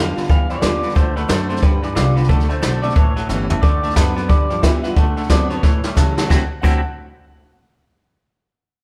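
A rowdy, upbeat rockabilly excerpt in D mixolydian races along at 180 BPM in 4/4, its eighth notes carrying a light swing, and the band sounds as if it's playing live together in one room with light reverb. An electric guitar through a small old amp takes the melody with a twangy, slightly broken-up bite, colored by spring reverb and slapback echo, while a clean, compressed electric guitar drives a riff in the lower register with tremolo on its bright tone. Behind them, a picked steel-string acoustic guitar with fresh strings adds full-bodied picked support, and an upright piano with audible action noise sits high and intimate in the background. A pizzicato upright bass with gut strings gives a woody, thumpy foundation, and a jazz kit played with brushes, up front yet roomy, with dark cymbals and a punchy kick, comes in at 0.2 seconds. The chords move mostly between G7, D7 and A7, drum fills at 3.3 and 5.6 seconds push the changes forward, and the passage lands on a D9 at 6.3 seconds before it cuts off.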